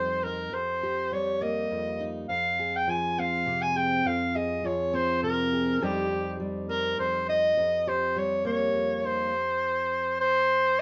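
A rough home demo in a modest small room carries this stirring, bittersweet folk passage in a straight 6/8, where a warm soprano saxophone sings the melody in a classical style with vibrato and a distant, plate-reverbed glow, while a fingerpicked steel-string acoustic guitar accompanies up front with warm, fresh strings and audible finger squeaks, playing on as the harmony drops away at 9.3 seconds.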